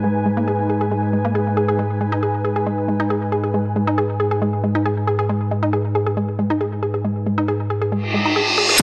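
Hypnotic and industrial, this techno excerpt moves at 137 BPM in G# minor, resting on a single G# minor chord. A juicy, squelchy blip pluck carries the riff through cassette-tape grit and analog delay, while a vintage, warbling drone sustains beneath it and an ethereal pad hovers higher with its own reverb, all three pumping under sidechain. The pad ends at 7.9 seconds, and a reverse cymbal with a sub drop enters up front at 8.1 seconds, over a dry, gritty hardware sound with light digital ambience.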